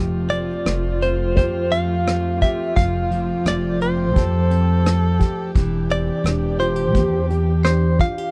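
A clean electric guitar, recorded direct and kept up front, carries the melody from 0.3 s, its picked, compressed tone colored by tremolo. This intimate, tender acoustic folk-pop ballad is cut from a longer piece and moves in a straight 4/4 from Fadd9 to Cadd9/E at 5.6 s. Beneath the melody, a woody, thumpy upright bass played pizzicato and a vintage brush kit with tight kick, hi-hat and rim click sit close and forward, the drums heard in a small room with their top rolled off. A full-bodied nylon-string guitar, thumb-plucked, supplies the accompaniment, while a single bowed viola adds a boxy second line with vibrato and portamento. Further back, a sul tasto chamber string section holds sustained chords, and a very quiet felt-muted upright piano, its action noise audible, plays arpeggios, all within a dry, dark production.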